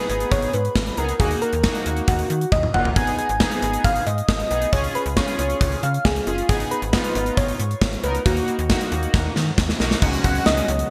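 Synth-pop at 136 BPM in G# dorian, cool and driving, with a bright 1980s-style digital production and a lush hall reverb. A punchy gated 80s drum kit sits up front, its medium-tuned snare, toms, hi-hat and bright cymbals ringing in a gated stone room, with fills at 2.5 and 9.1 seconds. A snappy, metallic-edged FM bass runs underneath, while fat, bold analog synth brass with chorus carries the accompaniment. On top, a round, gentle, keys-like struck synth lead sings the melody through chorus and digital delay, moving over chords that shift from G#m to D#m and C#. At 10.0 seconds, as the harmony lands on C#7sus4, a very quiet vintage string machine with phaser and a detuned unison pluck playing arpeggios join briefly before this excerpt from a longer piece cuts off.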